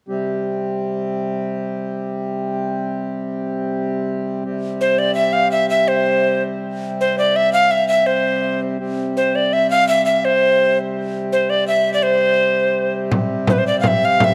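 In a straight 3/4 at 166 BPM, this rustic, festive medieval dance in C major opens with a hand-pumped harmonium holding a reedy, dark drone low in its range. At 4.8 seconds a breathy alto recorder takes the melody up front, woody and expressive with vibrato and a crisp, chiffy attack. A small, bright frame drum struck with hard hands joins at 13.1 seconds before this fragment of a longer piece breaks off, all set in a small room with a moderate echo-chamber reverb.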